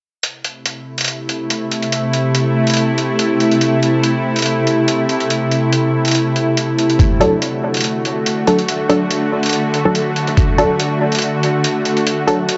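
An echo-chamber wetness hangs over this heavy, meditative deep dubstep excerpt at 142 BPM in a half-time 4/4 feel in A dorian, where a muffled, overdriven, pitched-down hi-hat ticks from 0.2 s, a tense, string-like bowed drone with vibrato and a bright sawtooth edge sits up front from 0.9 s over an Am chord, and when the harmony shifts to D at 7.0 s a thumpy, compressed kick lands while a detuned, filter-plucked dub chord stab with chorus and dub echo adds deep, muted hits.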